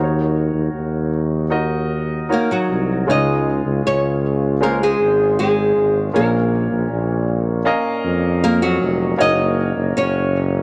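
A fingerpicked flamenco guitar carries the melody from the outset, its finger squeaks audible up front, over a baby grand piano with long sustain and a jazz-style tuba bass with light vibrato in this tender, emotional pop ballad excerpt, all set in a small room's light reverb as the harmony moves from Ebm7 into a new section at 3.1 seconds.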